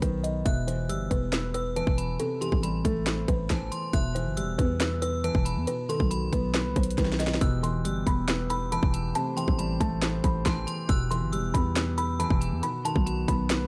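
Hard-hitting and brooding, this half-time trap excerpt at 138 BPM in E harmonic minor sets a woody, buzzing kalimba melody alongside a metallic FM bell line with chorus, phaser and delay, a dark baby grand piano with audible action noise, a growling 808-style bass and an overdriven, up-front trap kit of hard-clipped kick, sharp snare, handclaps and bright hats, with a drum fill at 7.0 seconds leading into soft chamber-organ flute chords with chiff from 7.4 seconds, all in a dry sound.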